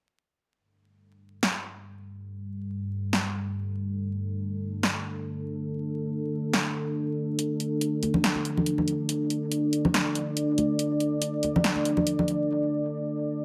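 A cavernous, dark deep dubstep excerpt at 141 BPM in a swung half-time feel opens at 0.6 s with an up-front, detuned sawtooth analog pad with a sub octave and chorus, holding slow-attack Gsus2 and D5 chords under a filter sweep, soon joined by a layered electronic drum kit of hi-hat and punchy snare, then by bright, close, hard-hand congas with dub echo from 8.0 s, all set in a plate-reverb, echo-heavy mix with vinyl crackle before a break at 12.5 s leaves the pad ringing.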